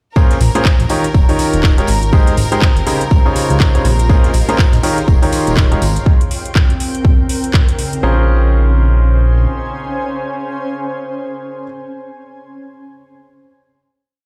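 Piano house at 122 BPM in Bb dorian, bittersweet and energetic, built on a swung groove where a punchy, up-front electronic kick and a house kit of metallic hats and claps are joined by a very quiet, dry, dark reggae kit breakbeat and a background tambourine. A bright baby grand piano plays close-voiced, dotted-rhythm chords with delay through Bbm9, Eb9, Abmaj9 and Dbmaj9, over a fat, thick analog bass in a dotted rhythm, while a clear, earthy violin section holds high chords in the background until 6.1 s. A cloudy granular pad enters at 1.3 s with slowly shifting chords and its own reverb, and the piano, bass, violins and pad pump against the kick before the piece settles on a final Bbm9 at 8.0 s in a large, bare-room ambience.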